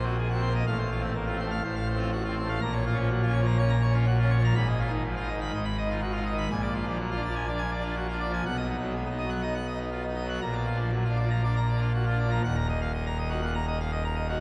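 A solo pipe organ on full registration, its bright mixtures, baroque voicing and crisp chiff heard up front against a long, wet church reverb, drives this dramatic, stormy classical toccata excerpt at 123 BPM in straight 4/4, settling into Eb minor from 4.6 s and landing on an Eb minor chord at 12.4 s as the brief fragment of a longer piece closes at 14.4 s.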